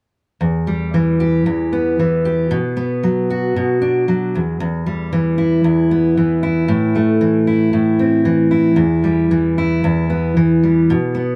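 A moderate studio ambience surrounds a full-bodied, up-front fingerpicked steel-string acoustic guitar, touched with digital delay, in this short wistful pop fragment cut from a longer piece. Playing solo in E minor at 115 BPM in a straight 4/4, the dreadnought guitar moves through Em, Bm and Am before returning to Em at 8.8 seconds as the music shifts into a new section. The mood is reflective, with the warm guitar ranging from E2 up to G4.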